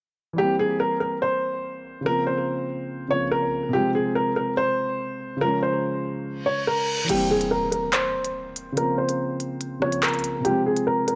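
A half-time drill feel sits under this menacing, dark hip hop fragment, cut from a longer piece. For most of it the two pianos carry the piece alone from about 0.3 seconds. A deep, mellow concert grand plays low accompaniment with short sustain and a vintage smoothness, while an intimate upright piano takes the melody higher up, woody and natural, with audible action noise and a digital delay trailing its notes. Both pianos are up front and softened by a low-pass filter as they cycle through C7, Bbmadd9, Fm and Db. An electronic reverse cymbal rises in at 6.4 seconds and lands on an impact at 7.1 seconds, where a produced drill drum kit arrives with crisp hi-hats, handclaps, rim clicks and a crash cymbal. A light, small-room reverb gives the whole an enclosed, shadowy air.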